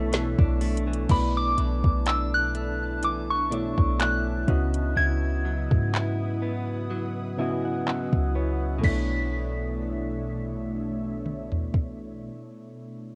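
Late-night and longing, this slow contemporary R&B excerpt at 62 BPM in B dorian sways on a lightly swung 4/4, moving from Bm11 to C#m11 and back, with a home-cassette haze over soft, round electric-piano-like synth keys, an ethereal pad given ensemble chorus, phaser and sidechain pumping, and a direct-recorded clean electric guitar playing arpeggios through tape echo. A deep, boomy 808-style bass and an up-front drum kit with a woody snare, metallic hats, handclaps, toms and crash anchor the groove. From 1.1 seconds a pure FM synth bell carries the melody high above, and the keys add a fill from 6.9 to 8.8 seconds.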